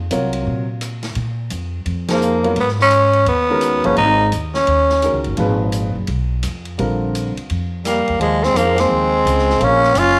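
Modal jazz with a hypnotic, intense swing, this short excerpt cut from a longer piece sets a woody, up-front pizzicato upright bass and a warm grand piano over a big-band drum kit of ride, hi-hat, rim click, snare and punchy kick, with a band accent at 2.0 seconds as a raspy, growling tenor saxophone takes the lead, joined from 7.9 seconds by a distant, bright trombone with light vibrato, all in a small room with a wet spring reverb.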